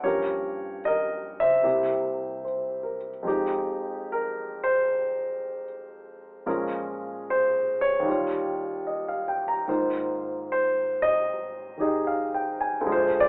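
A solo grand piano opens this intimate, smoky jazz ballad fragment, setting a slow swung pulse in four with a half-diminished Gm7b5 moving to C7. Up front in the mix, the piano sounds natural and warm, with audible action noise and a short sustain that keeps each chord from lingering. Its range stretches from C2 to Bb5, and at 3.2 seconds the harmony settles onto a rich Fm9 before passing through Bbm7, Eb9 and finally Ab6. Light reverb gives the feel of a live performance in one room, yet the whole is filtered through a boxy telephone tone that lends it a faded, late-night character. The passage, cut from a longer piece, ends at 13.3 seconds.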